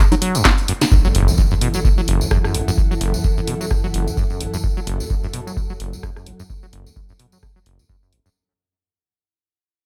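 A swung 4/4 groove at 129 BPM drives this trippy, gritty acid house excerpt in F# minor, built on a punchy, tape-warm analog drum machine of congas, handclaps, hi-hat, rim click and snare, a dry, deep electronic kick up front from 0.5 seconds, and a jingly acoustic tambourine in a live room. A squelchy, resonant sawtooth acid bass riff with tube saturation, subtle chorus and sidechain pumping carries a filter sweep from 0.9 seconds, when a drum fill and band accent give way to a smooth, detuned analog pad holding F#m7 and a background electronic impact. A cloudy, blurred granular pad with built-in reverb drifts in behind from 1.5 seconds as the whole passage fades out under light reverb.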